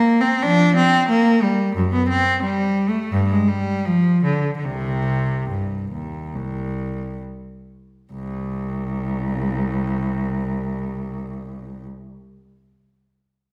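Grave and introspective, this classical piece in the manner of a baroque suite movement features a single cello playing alone in 4/4 with a freely breathing rubato feel. The cello is heard up front and close, its bowed tone rich and smooth, with even phrasing and vibrato colouring its sound as it ranges from deep low register up into its singing middle. From 0.4 to 8.1 seconds the pulse gradually slows, lending the opening passage a weighty, reflective gravity before a new section begins at 8.1 seconds. The instrument sits in a wet, resonant recital hall acoustic, where a lingering reverb of about 1.4 seconds surrounds the solo line with spacious depth. Cut from a longer piece, the excerpt closes at 11.9 seconds.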